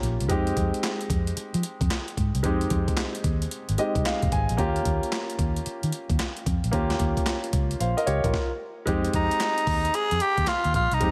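A swung sixteenth-note groove at 112 BPM drives this punchy, confident new jack swing cut in F minor, with a gritty, compressed breakbeat-style kit (thumpy kick, handclaps, hi-hat and snare) up front beside a dark, round muted electric bass and a clear, polished baby grand piano that adds a fill around 3.5 seconds over the Fm7 to Eb7 changes. After a brief stop at 8.3 seconds, the music returns to Fm7 and a raspy, forceful tenor saxophone takes the lead from 9.2 seconds with light vibrato, joined by a very quiet group handclap, all set in a small room with light reverb.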